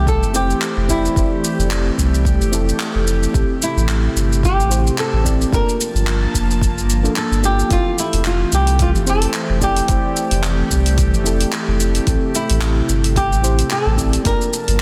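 Sunny and relaxed, this sunset chillout fragment moves at 110 BPM in F major with a lightly swung sixteenth-note feel, cycling through Fmaj9, Am7 and Gm9. A fingerpicked flamenco guitar carries the melody with audible finger squeak and a touch of tape echo, over a soft, round FM electric piano treated with chorus and delay and an airy, breathy pad with slow attack and long release. From 0.1 s, a deep house kit of handclaps, hi-hat and shaker enters together with a deep electronic kick, both overdriven and roomy, while an up-front sine sub bass anchors the light reverb and dense, heavily limited master.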